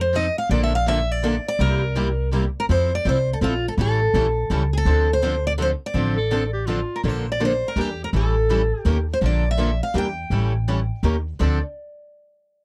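A picked steel-string guitar carries the melody over a woody, thumpy pizzicato upright bass from the start of this fiery, virtuosic gypsy-jazz passage in D minor, swinging in 3/4 at 165 BPM. Two more picked steel-string guitars supply the accompaniment, one boxy with fresh strings and audible finger squeak, the other sitting softly in the background. A mellow clarinet with vibrato adds a brief second line from 6.2 to 7.0 seconds, and the whole take has a dry, close, 1970s-style studio sound.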